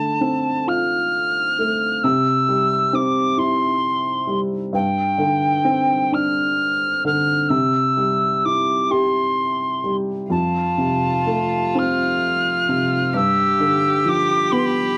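A moderate studio reverb surrounds this longing, haunting Celtic slow air in rubato 6/8 at about 44 BPM, where an up-front reedy wooden whistle carries the melody with chiff and vibrato over a woody, vintage upright piano moving from Dm7 through C and G7sus4, until an intimate cello joins at 10.3 seconds with an airy, sul tasto bowed second line beneath the closing F and G7 chords.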